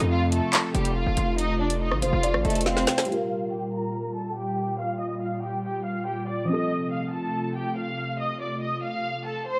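A tense, menacing drill track in a half-time feel, this short cut from a longer piece opens with a lush, bowed violin section carrying the melody up front, its vibrato focused and its top smooth under a low-pass filter. Beneath it, a dark concert grand piano plays mellow, boxy accompaniment with deep bass, while an airy, breathy pad holds soft sustained chords with slow attack, long release and a chorus shimmer. A heavy, saturated 808-style bass hits with fast attack and aggressive distortion, and the electronic drum kit adds handclaps, metallic hats, rim clicks and a woody snare roughened by vintage 12-bit sampler grit. The drums close with a fill at 2.7 seconds, and by 3.2 seconds both bass and drums have dropped out, leaving strings, piano and pad under a filter sweep as the harmony moves from F to Gm7 and back. Light reverb lightly colours the whole thing.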